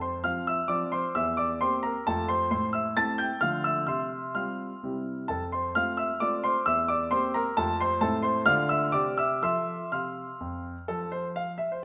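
In a rubato 3/4 at 130 BPM, this playful, graceful classical-period piano sonatina fragment in F major, cut from a longer piece, features a smooth, vintage grand piano played solo and up front from 0.0 to 11.8 seconds, spanning E2 to A6 and circling through F, C7/E, Am, Dm and a Csus4 that settles on C, all framed by a moderate recital-hall reverb.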